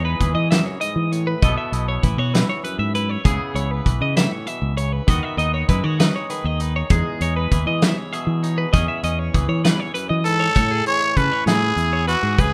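A raspy, growling trumpet enters up front at 10.2 s with slapback echo, carrying the melody just as this playful, bright math rock and midwest emo excerpt moves from Emaj7 through C#m7 and E6 toward a closing Amaj9, in 6/8 at 66 BPM in E major. Beneath it, a compressed twelve-string electric guitar picks sparkling arpeggios with its own slapback echo, while a clean, twangy electric guitar with vibrato plays accompaniment. A fat-snared, roomy indie drum kit with a rolled-off top comes in at 0.2 s over a warm fingered bass that sits up front from the very start, all in a rough home demo mix with light reverb.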